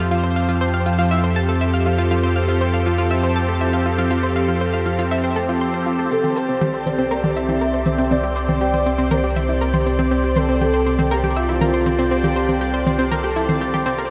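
This excerpt of ambient, sequencer-driven space music opens on a swirling, detuned analog pad holding sustained chords through phaser and chorus, sitting up front over a deep, round sine sub bass. A chorused analog pluck with a fast attack and short decay repeats a riff through cassette tape and delay, while a bubbling stepped-filter texture with resonant random filter steps lingers in the background. The piece moves at 120 BPM in a straight 4/4, its luminous, expansive mood carried on a long, shimmering reverb, and the harmony shifts from Fmaj7 to C7 at 6.1 seconds. At that point an expressive, dark-edged sawtooth-and-triangle lead enters with vibrato, a moving notch, ensemble chorus and delay, singing its melody until 13.8 seconds. Electronic shaker and toms, overdriven and delayed, arrive at the same moment to give the second half a produced pulse.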